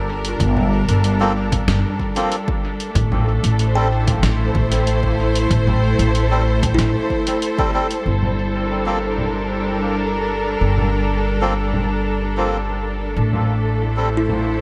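Ambient dub with a meditative, hazy mood, cut from a longer piece, where a rich, bowed string section holds smooth sustained chords up front through a low-pass filter while a woody pizzicato upright bass anchors the low end. A hollow, thumb-plucked kalimba spins gritty, dub-echoed arpeggios in the background before dropping out at 9.8 seconds, and a reedy, breathy melodica adds echoing stabs. Underneath, a muffled, pitched-down sampler-style kit of congas, hi-hat and snare sits in a large room with dub echo, joined by a punchy electronic kick that stops at 7.7 seconds, all under light reverb and studio ambience.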